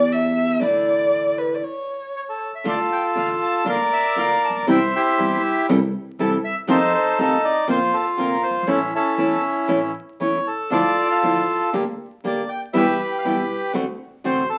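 Heard through the crackle of a very old 78 rpm record and a wet studio reverb, this melancholic, passionate tango moves at 119 BPM in 4/4 with a rubato feel in D minor. A single bowed violin opens with an expressive solo full of vibrato and portamento. Beneath it sit a fingerpicked classical nylon-string guitar with audible finger squeak and a woody, dark pizzicato upright bass in the background, before a break at 1.6 seconds. The reedy, airy bandoneon takes the melody up front from 2.2 seconds, carried by the guitar and bass through a brooding D minor progression.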